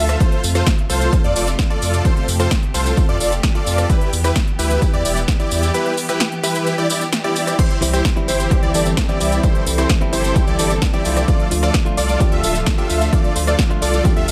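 Bright, lush studio strings, a catchy plucky unison lead with tape echo, a huge detuned supersaw riff and a deep saturated sub bass all pump together from the start of this uplifting, euphoric festival progressive house excerpt at 130 BPM in C major, joined almost at once by a punchy, up-front electronic kick and a big-room kit of crisp hats, punchy snare, rim click, tambourine and crash, before a clean, direct-recorded electric guitar enters at 7.8 seconds over chords moving from F through Em and C to Dm in a dry mix.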